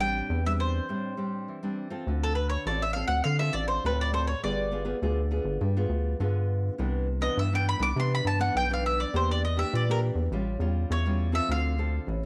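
A bright, picked bowl-back mandolin carries the melody over a fingerpicked nylon-string guitar and a rubbery, bouncy, dark square-wave bass, both guitar and mandolin colored by cassette tape and plate reverb, in this bittersweet, lively samba-and-choro fragment at 102 BPM, which passes through a break from 0.9 to 2.1 seconds before the mandolin takes a solo over jazzy changes running from Dm7 through G7b9, Cmaj9 and A7b13, all with the intimate feel of a home cassette recording.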